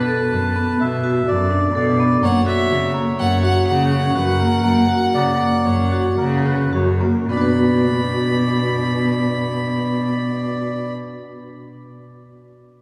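A dark, earthy bowed violin carries the melody over a reedy, breathy melodica line and a smooth, up-front cello bass with vibrato, with close-miked vibraphone arpeggios, metallic and ringing with a fast motor vibrato, entering at 0.1 seconds. This pensive, hypnotic chamber piece in B minor moves in 5/4 at 104-126 BPM, slowing from 3.2 seconds and settling from Bm7 and F# onto a plain Bm as a new section begins at 7.3 seconds. It is a fragment of a longer work, captured in a church or concert hall with a long cathedral reverb.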